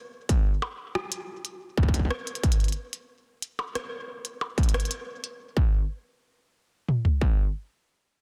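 This wistful, playful IDM excerpt at 91 BPM in a straight 4/4 opens at 0.3 s with two electronic drum kits up front. A glitchy kit brings clicky hi-hats, percussion blips and a rim click, with tape echo and a softly clipped snare, alongside a louder industrial kit whose distorted kick and toms carry the weight, all set in light reverb and digital ambience under a dense, heavily limited modern master. The glitchy kit drops out at 5.4 s, leaving the tape-warm industrial kit alone until it stops at 7.4 s.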